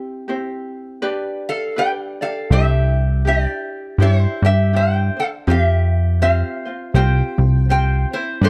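A metallic, nasal resonator slide guitar carries the sunny, dreamy melody up front from 1.5 seconds in this Hawaiian excerpt, over a light, fingerpicked ukulele that opens alone and a punchy, wave-folded analog bass that enters at 2.5 seconds with a fast-attack filter pluck, all set in a gently swung small-room ambience with a dark production.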